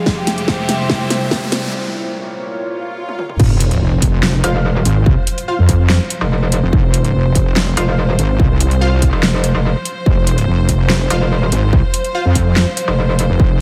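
A half-time 4/4 pulse at 144 BPM drives this menacing, aggressive heavy wobble dubstep excerpt, where a morphing wavetable pad, electronic riser and sub drop, distant bowed strings and a dubstep kit with a huge snare and metallic hats build over a distorted kick until the drop at 3.4 seconds unleashes an up-front detuned sawtooth wobble bass, joined at 4.4 seconds by a bright FM-edged metallic wobble bass and punchy phaser-tinged orchestra-hit stabs, all steeped in cathedral-sized reverb.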